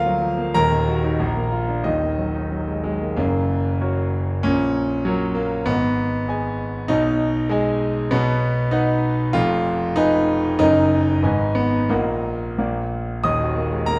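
In a flexible, rubato 2/4 that moves between 88 and 99 BPM, this virtuoso classical piano study sounds stormy and passionate. A clear concert grand plays alone from start to finish, sitting up front with a natural tone and deep bass that reaches from Eb1 up to Eb6. The passage opens in Eb minor, circling between Ebm and Bb harmonies, then shifts to F# major at 3.2 seconds for a longer second section. Chords there move through G#m and B, and the key returns to Eb minor at 8.1 seconds before a cadence on Ebm at 13.2 seconds. A wet, large studio reverb with a 1.5-second tail gives the dark production an enveloping sense of space, and the recording is cut from a longer piece.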